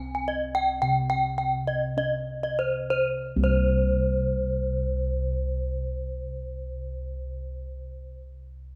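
Balinese gamelan, brilliant and hypnotic, in which round, beating bronze bossed gongs carry the bass while a bright, ringing bronze metallophone with paired tuning and shimmering beats plays arpeggios, both up front in a recital hall's moderate reverb, as the music slows through its first 3.2 seconds before moving into a new section in this brief cut from a longer piece.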